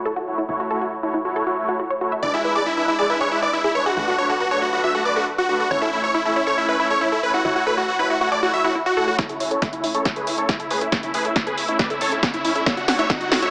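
Uplifting trance at 138 BPM in F# minor, this driving, euphoric excerpt opens with a lush, detuned unison pluck spinning arpeggios under a filter sweep, breathing with sidechain pumping and dub echo. A tight, nasal sequencer bass sits in the background until 9.2 s, while an airy, evolving supersaw swell with a sub octave and noise layer holds sustained chords from 0.3 s. At 2.2 s a huge, bright supersaw lead takes the melody up front, compressed and detuned, shaped by a low-pass filter and dub echo as the harmony moves from F#m7 through E7/G# and Bm7 to F#m7/A. From 9.2 s the second section turns into a build-up on an A chord, where an overdriven, layered electronic kick re-recorded in a large room joins a punchy analog drum machine whose hi-hats and snare play a fill, and a filter sweep rides the supersaw. A very quiet riser creeps in near the end before the music settles back on F#m7, all set in a lush hall reverb with a small speaker sound.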